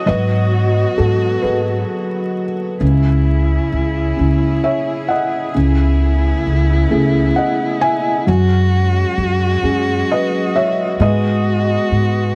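Set in a slow, straight 6/8 lilt, this fragment of an acoustic folk-pop ballad feels reflective and heartbroken. A felt-muted upright piano carries the melody up front, its tone soft, dark and intimate behind thick felt, with the natural noise of its action audible. From 0.1 s a pizzicato upright bass on steel strings sits close and prominent, woody and shadowed. A single bowed cello adds a focused second line with vibrato and a smooth top, while a chamber string section holds quiet sustained chords, played sul tasto with gentle attack and light vibrato. The harmony moves through G#m7, C#m, Amaj7/C#, F#sus2 and back to G#m7, all set in light reverb beneath a bed of vinyl crackle.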